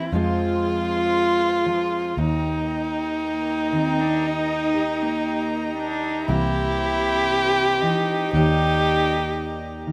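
From the first moment, a full-bodied fingerpicked jumbo steel-string acoustic guitar, a dark, woody violin played close and up front with vibrato, a soft, distant bowed cello carrying the melody, a round, punchy foam-muted electric bass and a floating chamber string section sustaining chords in the background unfold an intimate, hopeful acoustic folk-pop ballad at 58 BPM in Eb major, moving from Fm through Eb and C7 to Ebmaj7 in a small, reverberant room with a rough home-demo feel.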